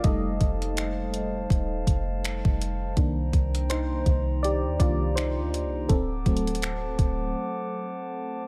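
Contemporary R&B at 82 BPM with a lightly swung, late-night, longing mood: a warbling, vintage FM electric piano with tremolo takes the solo throughout over pure, ethereal glass harmonica chords, a deep, round 808-style bass and a crisp, overdriven 8-bit drum machine of thumpy kick, hi-hat and finger snaps, moving through F7, Cm7 and D7 in a digital ambience until the bass and drums fall away and the piano carries a short break over the harmonica from 7.4 s.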